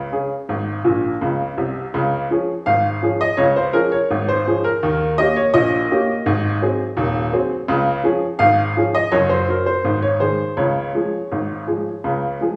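Ragtime piano in a lively, cheerful mood at 83 BPM in a straight 2/4 feel and D-flat major, this brief cut from a longer piece features a solo upright piano, woody, slightly detuned and up front with a short sustain, that plays a fill from 0.8 to 1.9 seconds and moves through chords from Ab to Eb7, Ab7 and Gb before settling on Db, all set in a live room with small-room ambience and a wet, large studio reverb.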